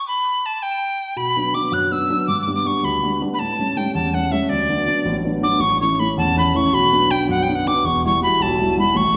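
Celtic folk in a lively, cheerful 6/8 at 108 BPM, this short cut from a longer piece opens with a metal mid whistle playing the melody alone, its airy tone carrying vibrato, a crisp chiff on each attack and an expressive, up-front presence. At 1.2 seconds a dark, mellow grand piano enters as accompaniment, intimate and smooth with a vintage character and audible action noise, moving through Bm, G, A7 and D6 before the second section turns to A, Bm and Emadd9. A recital hall's reverb gives the recording a spacious, church-like bloom.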